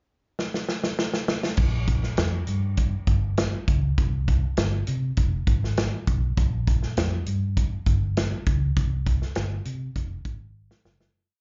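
This is a passionate, driving piece of uptempo 1960s-style soul in straight 4/4, and it opens at 0.4 s with a drum fill across the pickup bar. The acoustic kit has a natural small-room character, with dark cymbals, a medium-tuned snare and a tight kick. It sits up front and settles into a backbeat soul groove of kick, snare, hi-hat and crash. At 1.6 s a vintage fingered electric bass joins, round and foam-muted through an amp. It plays a melodic, syncopated soul line with chromatic approach notes, spanning deep low notes to its middle register. The sound is that of a live gig heard through the venue's PA, with a touch of club reverb and a dull top end. The music begins fading at 8.8 s, and another short drum fill arrives just before it ends.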